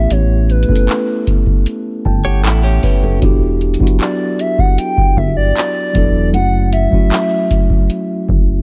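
A booming, dry analog drum machine with a deep kick, metallic hats and handclaps anchors this late-night, sensual contemporary R&B excerpt at 77 BPM in E dorian, where a rubbery square bass and a mellow tine electric piano, which plays a fill from 1.7 to 3.2 seconds, support a hollow, woody clarinet-like synth lead with chorus and delay over A9, Em7 and F#m7 chords, while a bright, direct-recorded clean guitar adds brief delayed arpeggios between 2.2 and 3.2 seconds in a close, nearly reverb-free mix.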